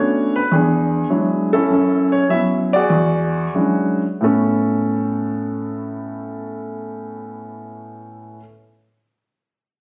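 A concert grand piano with a deep bass and an up-front presence plays this playful, relaxed solo jazz fragment in A major, cut from a longer piece and captured on a phone in the room with light reverb, swinging in 4/4 at 90-105 BPM as it slows through its opening 4.2 seconds over Bm9, E13 and F#7sus4 before settling on Aadd9.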